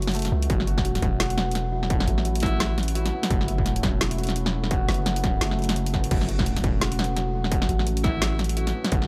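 A digital ambience frames this heavy, tense half-time drum and bass excerpt at 171 BPM over an F# minor chord, where a moody, detuned sawtooth pad with chorus, reverb and sidechain pumping sits in the background beneath a felt-muted upright piano playing soft arpeggios through digital delay with audible action noise, a deep sine 808-style bass sustains up front, a layered kit with woody snare and bright hats drives alongside a distorted, tape-warm electronic kick that enters at 0.5 s, and an edgy alto saxophone adds brief scooped notes on E4 at 2.4 s and 8.0 s.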